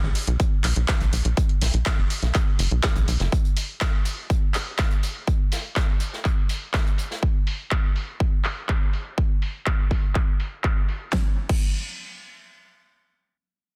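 Progressive house at 123 BPM with an expansive, emotional mood, taken from a longer piece. A tight, punchy sawtooth-and-square sequencer bass with a fast-attack filter pluck and tube saturation drives up front with sidechain pumping until 3.3 s, while an overdriven, punchy electronic kick sits up front and a layered big-room dance kit adds crash, handclaps, hi-hat and a huge filtered snare, joined in the background by a natural small-room country kit with a medium-tuned snare until 7.2 s. A filter sweep runs over the drums until 11.1 s, where the section changes, and the dense, heavily limited master carries a small-room ambience.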